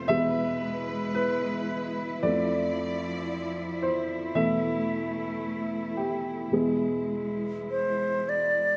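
Celtic folk slow air, longing and haunting, drifting rubato at around 50-58 BPM as a dark, woody upright piano with long sustain carries the accompaniment from the start, veiled con sordino strings hold sustained chords beneath it, and an airy wooden flute with crisp attack, vibrato and an unsteady tone enters up front at 7.7 seconds, all set in a moderate scoring-stage reverb of this fragment cut from a longer piece.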